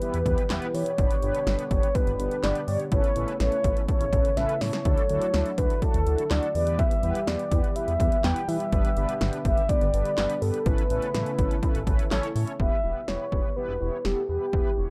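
Nostalgic and upbeat, this synth-pop excerpt moves at 124 BPM in a straight 4/4, cut from a longer piece and cycling through Em, G, Aadd9 and Dadd9 before returning to Em at 12.6 seconds. A horn-like synth lead carries the melody with a round, soft-attacked tone, chorus and vibrato, while mellow synth brass fills in beneath it with brassy, detuned sawtooth and square waves, a filter sweep and its own chorus and vibrato. A smooth analog pad holds sustained chords in the background with a slow attack and long release until 12.6 seconds, and a chorused synth bass, dark and glossy with pulse-width modulation and a moving notch, enters at 0.1 seconds. The punchy analog drum machine sits up front with kick, snare, hi-hat and handclaps, a short room on the snare, clap and hats, and a drum fill at 4.4 seconds. A barely audible downlifter opens the excerpt, and the whole mix is dry and gritty, with little reverb.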